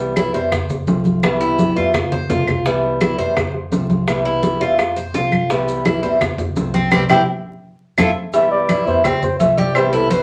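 A straight 4/4 pulse at 169 BPM drives this sunny, relaxed excerpt of Cuban son and guajira in C major. From 0.2 seconds the percussion rolls in: thick-skinned congas, tight high-tuned bongos and cowbell played with soft hands, woody claves and grainy maracas sitting low in the background, with a drum fill at 1.2 seconds and a band accent shortly before the second section. Underneath, a boxy, fingerpicked old ladder-braced acoustic guitar, with audible finger squeak, and a dark, thumpy pizzicato upright bass on gut strings carry the harmony as it alternates between Cmaj7 and F. Up front, a mellow, metallic Cuban tres spins arpeggios on its doubled strings. At 8.3 seconds a bucket-muted trumpet takes the melody, veiled, breathy and intimate, with scooped notes in a jazz manner. A club reverb and a layer of vinyl crackle surround the whole ensemble.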